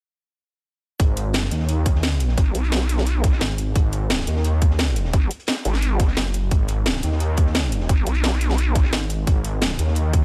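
Dark technical drum and bass at 174 BPM in G# minor, this tense excerpt sets a thick, detuned saw bass with chorus and sidechain pumping against an overdriven electronic kick, a cracking drum and bass kit with bright hats, and a gritty breakbeat kit sitting in the background, while a nasal, resonant vowel-sweep wobble bass joins from 2.4 to 8.9 seconds over a single G#m chord in a reverberant mix with lossy compression artefacts.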